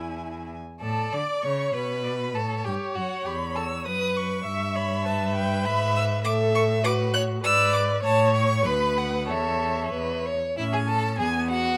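Up front, the second violin carries an expressive inner line with soft attacks, vibrato and portamento, while the first violin sings the melody high above with focused tone. This spirited, lively classical-period movement for string quartet, cut from a longer piece, moves in a quick 2/4 with a rubato feel, as the viola's smooth-topped accompaniment and the prominent cello bass complete the rich texture. Close, detailed microphones catch each bowed player inside a moderate large-studio reverb, and the harmony settles into A major at 5.6 seconds before the music turns to a new section at 10.6 seconds.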